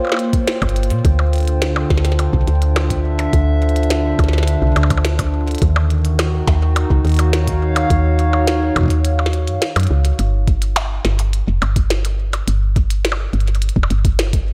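A hollow, flute-like pad opens this melancholic, intricate IDM excerpt at 0.0 seconds, holding dark, slow-blooming chords treated with chorus alongside a glitchy electronic drum kit of clicky hats, percussion blips and a tiny snare, roughened by overdrive, small-room reverb and delay. A soft, overdriven electronic kick and a woody, round FM bass join almost at once, the bass sitting up front with a fast attack and a decaying, shadowy low end. At a straight 105 BPM in 4/4, the harmony moves from Bbm6 to Dm7 and then to Ebm7, giving the opening section a wistful, clouded colour. The kick drops out briefly at 9.6 seconds, and at 10.2 seconds the pad falls away, leaving bass, kick and the glitchy kit to carry a sparser closing section as the chords fall silent. A light reverb lends the whole an intimate, close-knit space.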